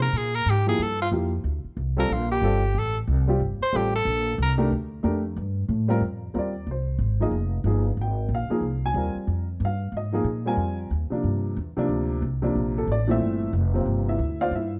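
Swung eighths drive this modal jazz excerpt at a brisk 184 BPM in 4/4, with a searching, intense mood. An edgy, forceful tenor saxophone solos from the start, its punchy, scooped notes shaded with vibrato, until it stops at 4.5 seconds. Pizzicato upright bass with a woody tone anchors the low end throughout, while a slightly detuned upright piano enters at 0.7 seconds with short-sustained chords over Fm and Gm harmonies, all set in a dark production with light reverb.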